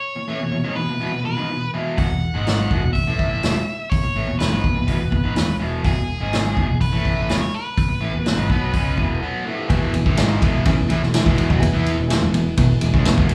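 A roomy live-band sound in a large studio reverb carries this sunny, swaggering classic rock excerpt in E major at 124 BPM, opening with a nasal, overdriven lead guitar with a parked wah on the melody and a bright, compressed distorted guitar riff up front. From 2.0 s, a fingered electric bass sits in the background while a distant vintage drum kit with dark cymbals, a medium-tuned snare, a tight kick and a rolled-off top stands forward in the mix. During a brief break, a full tonewheel organ slips in at 9.4 s, very quiet with key click and vibrato, and the section at 9.7 s adds an intimate grand piano with audible action noise and a dark, biting overdriven guitar riff set back behind the band.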